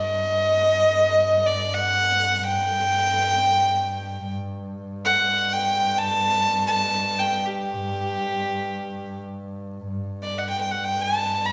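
A bowed violin and a double bass sound together from the very start of this passionate Arabic maqam excerpt, the intimate violin carrying the melody up front with a soft attack, airy sul tasto tone and light vibrato while the rich, smooth bass holds an even G2 drone beneath it, both heard within the reverberant space of a recital hall.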